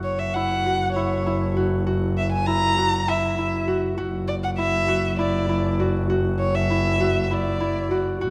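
Contemporary instrumental music in a pensive, restless mood, this short excerpt moves at 199 BPM counted in eighths across an uneven 7/8 metre with a straight feel, tuned slightly high to A4 = 441 Hz. A single bowed violin carries the melody between C#5 and A#5, its soft attack, vibrato and expressive portamento giving the line a warm, singing quality until it stops at 8.0 seconds. Beneath it, a fingerpicked Celtic harp plays ringing acoustic arpeggios in a narrow span from E4 to F#4. A single bowed double bass holds the low end between E1 and F#1, its tone focused and slightly boxy with vibrato. All three instruments sit up front, and the harmony rests on one Esus2/F# chord throughout. A moderate scoring-stage reverb with a 1.7-second decay surrounds the ensemble.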